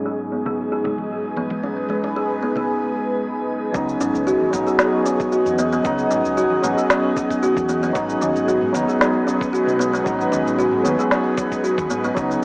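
This earthy, meditative organic downtempo excerpt opens at 114 BPM with a soft, fingertip-plucked kalimba ringing up front in arpeggios through a filter sweep, tape echo and shimmer reverb, over an airy, breathy pad of detuned sustained chords treated with chorus, phaser and sidechain pumping. A clean tine electric piano with medium tremolo, heard through a combo amp, plays accompaniment alongside them, while a barely audible bronze singing bowl adds slow-beating metallic shimmer and bright, hard-handed congas sit in the background until about 2.7 seconds. At 3.7 seconds the groove arrives with a gritty, overdriven thumpy kick, a woody, tape-softened snare with electronic cabasa and a dark, round fretless bass with subtle chorus. The harmony moves from G#m7 to C#m7 and back to G#m7 at 8.0 seconds over a lightly swung 16th feel. The whole mix sits in a lush hall reverb and carries the worn, warbling pitch drift and muffled small-speaker character of old cassette tape.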